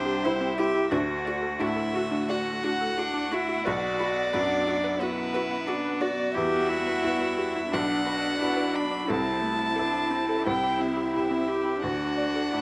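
Melancholic and reflective, this rubato neoclassical excerpt at 88 BPM sets a dark, up-front violin melody with slapback echo over a rich, floating cello line, an intimate viola, a woody upright piano with audible action noise, sustained sul tasto chords from a background string section, and a round, detuned analog pluck arpeggiating with chorus and slapback echo, all in a rough home demo mix with wet studio reverb as the chords move from C and D through Bm and Emadd9.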